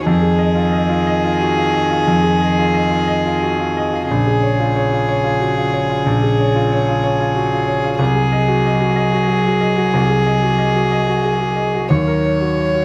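Reflective and fragile, this neoclassical excerpt for piano and strings drifts at 60 BPM in a rubato 6/8, tuned to A4 = 442 Hz, with a chord progression of Fm7, Bbm7, Ab7/C and Ebm7. A polished concert grand sits up front with deep bass and long sustain, while a pure, floating solo violin carries the melody sul tasto with a soft attack, both touched by a slapback echo. Beneath them, a lone cello plays an intimate second line with light vibrato and an airy bow in the background, all captured dry and outdoors with little reverb.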